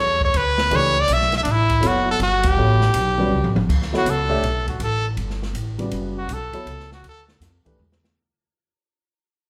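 Modal jazz in a swung 3/4 at 161 BPM, open and hypnotic, resting on a Dmaj9 chord in D major and cut from a longer piece. A brilliant, punchy trumpet with light vibrato and scooped notes leads up front over a woody, thumpy pizzicato upright bass, joined by a warm grand piano accompanying from 0.7 seconds and an airy jazz kit with dark cymbals and a boomy kick, as the band hits an accent at 2.4 seconds before a drum fill. From 3.7 seconds the trumpet takes a solo while the music fades out, heard from further back in the moderate reverb of a large studio.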